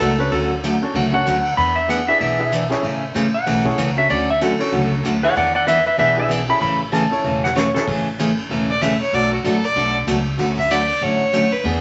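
A down-home, swinging slice of country western swing at 191 BPM in A major, cut from a longer piece, with a light swung eighth-note feel. A clean electric lap steel guitar plays a second line up front for the first 7.9 seconds, its fingered slide playing shaped by volume swells, while a bright, slightly detuned upright piano adds woody accompaniment and a full-bodied dreadnought acoustic guitar picks chords up front. Underneath, a dark pizzicato upright bass and a vintage brush drum kit with a fat snare, tight kick and dark cymbals keep the groove, and a drum fill at 7.2 seconds hands the spotlight to a clear, biting fiddle that takes the melody at 8.7 seconds with light vibrato and an earthy bowed tone. The harmony moves through Dmaj7, E7 and Amaj7 before turning to Bm7 under the fiddle. A wet studio reverb and a vinyl crackle with a dulled top end give the whole recording an old-record patina.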